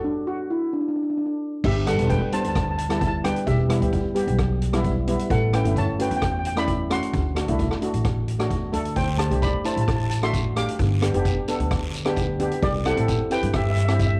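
This is a straight-feel calypso in 4/4 at 131 BPM, sunny and bouncy, in G major and tuned slightly sharp to A4 = 444 Hz. A lead steel pan opens alone with a brief stop-time figure, its shimmering, metallic tone struck with medium rubber sticks and sitting up front in a boxy little room. At 1.6 seconds the band falls in: a pizzicato upright bass with a woody, steel-strung sound, and a street-band drum kit of boomy kick, hi-hat, rim click and crash, mid-forward and rolled-off on top with a cassette-tape coloring. A second steel pan, a double-seconds part played with soft rubber sticks and also taped, adds mellow accompaniment beneath the lead as the harmony moves from Gadd9 through A7, D, D7sus4, G and C. A raspy guiro joins at 9.0 seconds, sitting far back in the mix, and the whole home-recorded cassette piece carries light reverb and small-room ambience before it cuts off.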